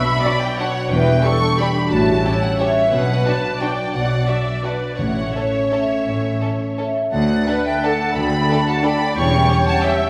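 Sweeping and festive, this excerpt from an orchestral ballroom waltz in D major moves at a rubato 159-196 BPM in 3/4, with a rich, vibrato-laden violin section singing the melody over bowed violas, a softer second violin line, mellow French horns holding chords, ringing harp arpeggios in the background, and lush cellos and double basses carrying the bass until 9.4 s, while a very quiet timpani stroke sounds at 5.0 s and airy flutes, a dark clarinet and a background oboe join at 7.1 s, all heard from further back in a reverberant concert hall.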